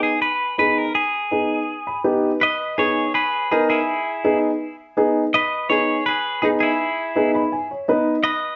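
Latin music with a danceable, passionate mood moves at a brisk, straight pulse in four, heard here as a short cut from a longer piece. A clean electric guitar carries the melody up front, its picked, twangy tone bright and compressed, with a touch of spring reverb around it. Beside it, a dark upright piano supplies the accompaniment, its woody, mellow voice ringing with long sustain and sitting just as close. The piano adds a fill from 1.7 to 2.4 seconds as the opening passage gives way to a longer second one, and another fill near the close, stopping at 8.2 seconds while the guitar carries on briefly to 8.6. The production is dark and warm, set in a short, wet studio reverb that keeps both instruments intimate.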